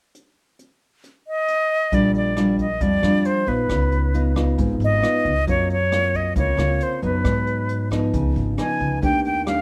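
This breezy, sophisticated bossa nova excerpt at 135 BPM in 4/4 opens with a distant, roomy brush kit, its boomy kick, hi-hat and rim click sitting back in a studio room. At 1.3 seconds a bright concert flute enters up front, close-miked and airy, with a soft attack, expressive vibrato and a plate reverb, moving between Cb5 and Ab5. At 1.9 seconds the fingerpicked classical nylon-string guitar arrives up front with a warm tone, joined by a woody, dark pizzicato upright bass on steel strings reaching down to Ab1. The harmony turns through rich jazz colours such as Bb6, Db9, Gbmaj7#11 and Abm7 before landing on Ebmaj9#11. A moderate large studio reverb gives the whole ensemble a polished, spacious sheen.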